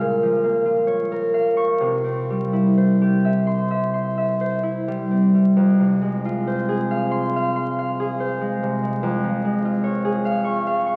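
A bright, ringing concert harp plays alone and up front through this wistful, mysterious classical fragment in F minor, fingerpicked with rubato at roughly 61-74 BPM across a span from F2 to F6, moving from Bbm and C into Fm at 5.6 seconds and Db/F at 9.0 seconds, all bathed in a long cathedral reverb and the crackle of a very old 78 rpm record.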